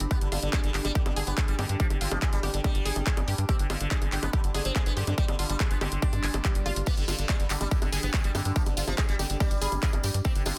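A punchy, overdriven electronic kick sits up front in this hypnotic psychedelic trance excerpt alongside a driving sawtooth sequencer bass and a layered dance kit of bongos, handclaps, hi-hat and crash with a small room ambience. A buzzing, shimmering sitar carries the melody through phaser, tape echo and sidechain pumping, while a detuned unison pluck riff and a warbling, nostalgic lo-fi pad with chorus pulse in the background. A brief electronic swell appears at 6.2 seconds, and a jingly, very quiet tambourine enters at 6.9 seconds within a dense, heavily limited modern master.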